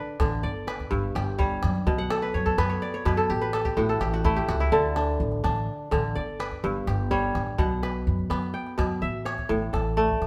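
A live band plays together in a moderately reverberant stone room, giving this hypnotic, joyful fragment of West African string and xylophone music a natural, open sound at 84 BPM in a straight 12/8. Up front, a ringing, crisp fingerpicked kora spins steady arpeggios over a cycle of G, B5, A and D5 chords, breaking into a fill from 2.0 to 4.7 seconds. Beneath it, a woody, thumpy pizzicato upright bass with steel strings anchors the low end, while a deep calabash keeps the pulse and adds a drum fill at 10.0 seconds.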